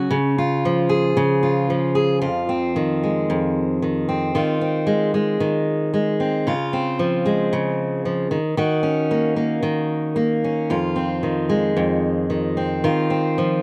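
Dry, open-air sound frames this heartfelt, sunny pop excerpt at 113 BPM in Db major, where a lone fingerpicked steel-string acoustic guitar with a warm, auditorium-bodied tone sits up front, moving from an opening Db through Fm7, Ab6/Eb, Dbmaj7 and Ebm7 after the brief first section gives way to a longer second one at 2.2 seconds.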